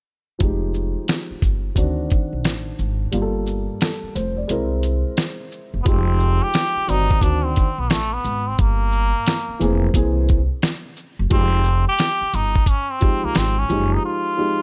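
A dark, boxy upright piano, a woody pizzicato upright bass on gut strings and a compressed, muffled lo-fi sampler-style kit of hi-hat, shaker, snare and thumpy kick open this mellow, cool jazz-hop excerpt on a swung groove, with the pitched-down drums carrying vintage 12-bit grit. The kick drops out from 3.1 to 5.9 seconds. At 5.8 seconds a trombone with a metal mute takes an up-front jazz solo, its tone brilliant, buzzy and thin with a smooth top, all in a dry, close sound.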